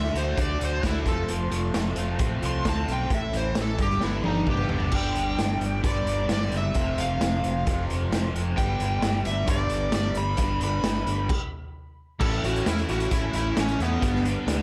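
A straight 4/4 groove at 132 BPM drives this swaggering, confident classic rock passage, cut from a longer piece. A raw garage drum kit sits up front, with a boomy kick, a medium-tuned snare, dark cymbals and toms in a pumping small room, its sound gritty and rolled-off on top, and a drum fill arrives between 4.0 and 4.9 seconds. An overdriven fingered bass, punchy and amped, anchors the low end under two overdriven picked electric guitars playing riffs: one tucked in the background, the other bright and treated with a phaser. An overdriven slide guitar, played with fingerpicks, carries the melody and opens with a solo, while a very quiet tonewheel organ adds piping, scooped sustained chords through a slow rotary speaker with key click, dropping out from 4.9 seconds and returning at 8.6. The chords move through D, F, A and G, a stop lands at 11.3 seconds, and the whole band sits in light small-room reverb.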